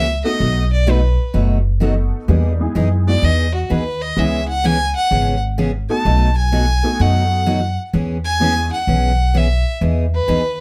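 Western swing country at 128 BPM in E major, this short cut from a longer piece has a playful, down-home mood and a swung eighth-note feel. A clear, smooth fiddle carries the melody as a solo from the start through 9.8 seconds, bowed by one player with light vibrato and sitting up front. Beneath it, a picked steel-string acoustic guitar gives bright, full-bodied accompaniment with fresh strings and audible finger squeak. An upright bass with gut strings supplies a woody, thumpy pizzicato low end, the loudest part in the mix. A detuned, jangly honky-tonk upright piano adds a vintage color, entering at 0.2 seconds and dropping out at 8.7 seconds, while light reverb gives the whole an easy sense of space as the chords move from B7 through Emaj7, C#m7 and E6.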